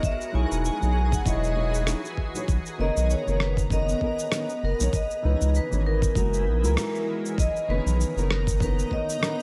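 A digital ambience wraps this relaxed sunset chillout excerpt, where a ringing, metallic vibraphone carries the melody with a delay, floating over a shimmering, ethereal pad and a faint, twinkling granular texture that drops out at 7.4 seconds. A dark, thumb-plucked nylon-string guitar with delay and a round, deep analog bass, set up front, enter at 0.3 seconds, while a gritty, overdriven electronic kick, shaker and rim click supply a swung beat. After a brief break with a band accent at 6.8 seconds, the piece settles into its next section on a lush major ninth chord.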